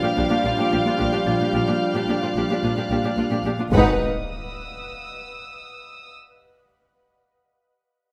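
A tense, uneasy suspense cue in 5/4 opens with intimate, sul tasto chamber strings: violins carry a lightly vibrato melody over a second violin line and a faint high violin texture, with viola accompaniment and a cello bass joined by a pure, floating double bass at 0.2 seconds. Distant, roomy French horns and a trombone section hold sustained chords beneath a shimmering, detuned ambient pad with chorus, set in a stone room reverb. A huge, bright impact strikes at 3.7 seconds and rings on to 6.4 seconds, and once the ensemble stops, the high violin texture lingers alongside it until 6.1 seconds.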